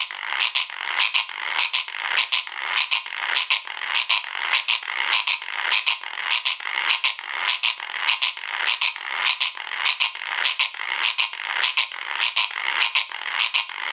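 A raspy, acoustic guiro enters at 0.1 seconds and carries this fiery, danceable Latin excerpt on its own at a brisk 203 BPM in a straight 4/4, sitting close, dry and up front in a moderate studio ambience as the passage moves from its opening section into a second one at 9.0 seconds.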